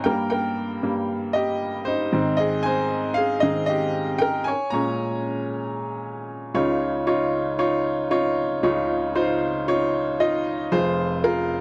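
A clear, woody upright piano opens alone, playing a bittersweet yet driving pop passage in Bb dorian at 115 BPM in a straight 4/4. Its open, up-front tone spans a broad register over chords moving from Eb/G through Ab and Bbm7, shifting at 6.6 seconds to a new section built on Dbadd9 before settling on Fm at 10.7 seconds. The close, dry 1970s-style studio sound carries a touch of light reverb, and this short excerpt is cut from a longer piece.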